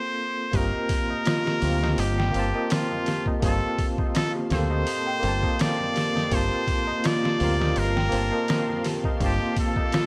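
Brooding and hypnotic, this swung trip hop fragment opens with a nasal, straight-muted jazz trumpet carrying the melody with vibrato and tape echo over a bright tine electric piano with tremolo, both coated in 12-bit sampler grit, on a rootless Gm11. At 0.5 seconds the groove arrives: a compressed, pitched-down sampler-style drum kit with a thumpy kick, a round, dark dub bass up front, delicate bell-like celesta arpeggios, very quiet sawtooth string-machine cellos, and a ringing, high-tuned tabla in the background. The bass drops out at 9.4 seconds, and the whole recording sits in digital ambience with a dry, gritty hardware sound and vinyl crackle.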